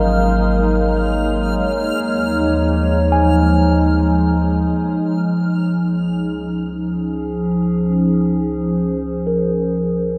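Weightless and luminous, this ambient excerpt floats in free time inside a huge, wet reverb, its warbling, tape-like pad holding dark, nostalgic chords up front while a filter sweep runs across it through the first 5.0 seconds. A mellow tine electric piano spins clean arpeggios through a diffuse delay, a round sine sub bass sits deep beneath, and a detuned organ-like drone and a bright, reversed swelling texture hover until 5.1 seconds. The suspended Ab9sus4 and Eb9sus4 harmonies give way to a Dbmaj9 at 5.0 seconds.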